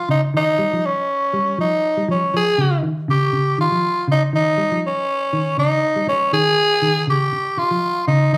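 A raspy tenor saxophone opens this afrobeat passage, carrying the melody up front with a bright, gritty, punchy tone and a touch of vibrato in a pop-leaning solo style. A moment later, at 0.1 seconds, a mellow electric guitar enters beneath it with clean, fingered arpeggios, its dark timbre sitting lower and softer in the mix. The groove moves in 4/4 with a light swing on the sixteenths, giving the passage a defiant yet hypnotic feel. The harmony alternates between Eb7 and Dbadd9, shifting every couple of seconds and cycling twice through the 8.4-second span. The two players sound as if captured live together in one room, bathed in a large studio reverb that lends the sound a spacious, wet glow. The clip is cut from a longer piece.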